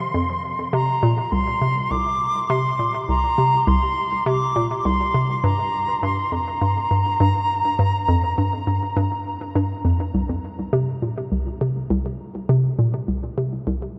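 A hollow, bouncy square-wave pluck with a detuned, warbling chorus and delay drives the low riff of this expansive, cosmic ambient space-music piece at 102 BPM, while a pure, distant silver concert flute with tongued, expressive vibrato sings a high delayed melody over F5, Csus2 and Gm chords until 9.6 s, leaving the pluck to carry on alone until 13.8 s in a huge, wet reverb.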